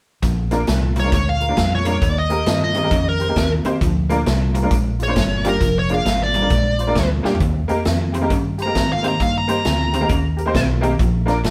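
A smooth, overdriven lead guitar sings the melody up front from 1.0 seconds in this soulful, laid-back electric blues shuffle, cut from a longer piece and moving between Bb and Eb chords. Beneath it, a bright, picked semi-hollow guitar drives the riff, a dark, round, foam-muted bass anchors the low end, and a detuned, jangly honky-tonk upright piano fills in the accompaniment. The swinging big-band drum kit, with its punchy kick and medium-tuned snare in a natural big room, drops a fill at 7.2 seconds, and light reverb gives the feel of a band playing live together in one room.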